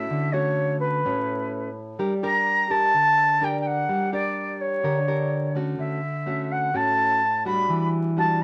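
Bossa nova with a breezy, sunny mood, this short excerpt pairs a breathy, reedy concert flute carrying the melody with a fingerpicked nylon-string guitar in a classical style supplying the accompaniment, both sitting up front. The flute has a crisp attack, vibrato and rolled-off highs, while the acoustic guitar sounds warm as the harmony moves from Dmaj7 to Gm, back to Dmaj7 and onto Em9. A moderate studio reverb and a layer of vinyl crackle give the recording a soft, aged glow.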